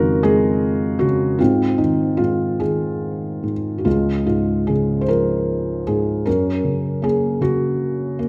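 Classical solo piano in a lyrical vein: a tender, unhurried passage in 6/8 with a rubato feel, cut from a longer piece. A felt-muted upright piano plays alone throughout its 8.3 seconds, its mellow, dark tone shaped by thick felt, with the action noise audible and the instrument placed up front for an intimate sound. Moderate concert hall reverb surrounds the piano as the harmony moves from Dbadd9/F through Ab and Db to Gb.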